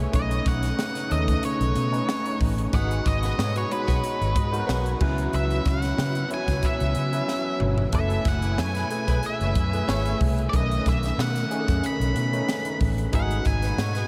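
A lightly swung sixteenth-note groove at 92 BPM in 4/4 drives this slick, bittersweet slice of polished 1980s jazz-funk pop, taken from a longer piece. The crisp fusion drum kit, with a high-tuned snare, punchy kick, hi-hat, crash and toms, sets an airy studio-room pulse and breaks for a fill at 7.3 seconds, under a round, foam-muted fingered electric bass given tube saturation. A barky tine electric piano, lightly overdriven through a combo amp and bathed in lush chorus, comps through the changes from B9 to G#m7, C#m7 and F#m11, while a dark, bowed string section holds expressive sustained chords in the background. Over this an octave-fuzz lead guitar carries the melody with a distorted, picked tone and analog delay. From 2.7 seconds a mellow horn section with soft attack and light vibrato adds a quiet second line, and a huge ambient reverb gives the mix a dreamy, soaked atmosphere.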